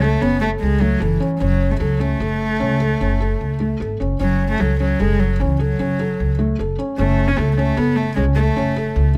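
Contemporary chamber music in an uneven 7/4 at 151 BPM, this hypnotic, urgent excerpt sits on a single F# minor chord and is tuned slightly low at A4 = 438 Hz. A dark, intimate cello carries the melody with light vibrato, an airy sul tasto bow and a soft attack, while a felt-muted upright piano plays mellow arpeggios thick with felt and audible action noise, and a woody, thumpy pizzicato upright bass on gut strings anchors the low end up front. Close, detailed microphones and little reverb keep the trio dry and immediate throughout the excerpt.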